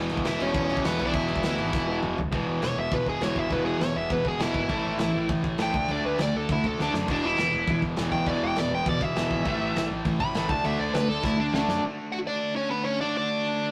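A straight 4/4 punk rock pulse at 202 BPM drives this rowdy, rebellious excerpt, where three bright, distorted rhythm guitars pick out riffs in the background over a fuzz-laden picked bass and a loose, punchy acoustic kit with dark cymbals, while an up-front, biting overdriven lead guitar takes a solo from 2.3 to 11.8 seconds across E5, A5 and D5 power chords, all set in a rough rehearsal-room sound with stone-room reverb and tube saturation, and the lead and one rhythm guitar carry on alone until 13.7 seconds.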